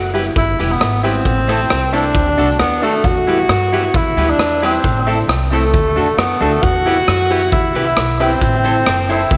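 An energetic, mischievous ska groove in straight 4/4 at 134 BPM, this E minor excerpt cycles through Em, Am and D as a warm, roomy tenor saxophone with light vibrato and tape echo carries the melody up front, over a woody, growly pizzicato upright bass, a clean, picked semi-hollow guitar with spring reverb, jangly, metallic tack piano stabs in the background, and a gritty, saturated garage kit with punchy kick, hi-hat and rim click, all set in a small echo-chamber space.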